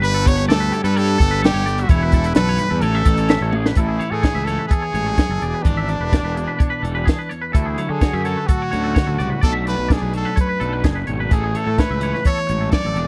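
Dry and close, this excerpt has the feel of a 1970s studio with little reverb, so every part sits near the ear. It is a wistful, playful blend of math rock and midwest emo at 127 BPM in a straight 4/4, opening in A mixolydian over G, Esus4 and A before a drum fill at 3.5 seconds leads into A major at 3.8 seconds. A brilliant, forceful trumpet carries the solo melody with vibrato and a slapback echo, while a compact cocktail drum kit with a high-tuned snare and punchy kick sits up front beside a growly, overdriven fuzz bass played with the fingers. A twangy, compressed electric guitar picks bright arpeggios through a tremolo effect. A clean electric guitar with spring reverb sits in the background, supplying accompaniment. The later passage moves through Amaj7, E7, Dmaj7 and Bm7 before returning to Amaj7 at 11.3 seconds, with all five parts playing throughout.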